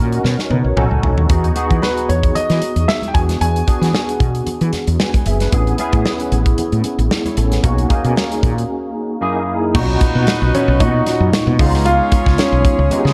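A barky, lightly overdriven tine electric piano with ensemble chorus fronts this glossy, urban slice of polished 1980s jazz-funk pop, riding a swung sixteenth-note feel over a round, woody fretless bass, a punchy studio drum kit with bright cymbals and very quiet, ringing congas, while a clear grand piano carries the melody in two phrases and a loose horn section with octave doubling joins after a break at 9.7 seconds.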